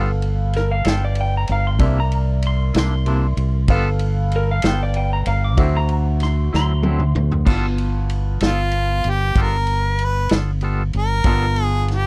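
Slow, gritty and swaggering 12/8 blues at 64 BPM in G mixolydian, where a dark, round fingered bass and a punchy vintage drum kit with dusky cymbals sit up front beneath a woody, slightly detuned upright piano and a twangy tremolo guitar, while a slightly broken-up, lo-fi guitar with spring reverb plays a line from 0.6 to 7.5 s, a drum fill leads into the next section, and a bright overdriven harmonica with light vibrato and scooped notes takes the melody at 8.5 s, all captured in a dry, close 1970s-style studio sound.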